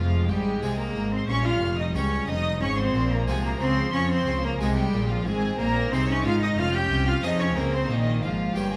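A dramatic, stormy baroque-style concerto movement in F minor opens with every part sounding together from the first beat, cut from a longer piece and lasting 8.8 seconds at a straight 91 BPM in 4/4. A rich solo cello, bowed with vibrato and set up front yet with a distant quality, carries the melody while a dark, lush studio violin section also plays the melody higher up. Behind them, a chamber violin section plays a focused second line and a chamber viola section fills in accompaniment, both bowed with vibrato and kept in the background. A symphonic cello section, bowing smoothly and evenly, and a focused, lush studio double bass section anchor the bass. An airy, brilliant Flemish-style harpsichord plucks its accompaniment in the background as the harmony moves from Fm through Gdim, Fm/Ab, Ab and Db/F back to Gdim, all held in a moderate recital hall reverb.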